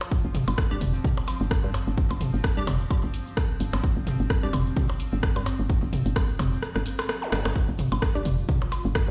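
A punchy, tape-tinged electronic kick drives this hypnotic, clinical minimal techno excerpt at 129 BPM with a light 16th-note swing, alongside a round, woody FM bass that pumps against it, an overdriven analog drum machine on hi-hat and rim click, delayed electronic blips and toms, a grainy tube shaker, a chorused gated texture that pulses throughout, crisp wave-folded chord stabs echoing through a digital delay, and a brief electronic zap, while the kick drops out for a drum fill from 6.6 to 7.6 seconds, all heard through a big sound system in a bare stone room.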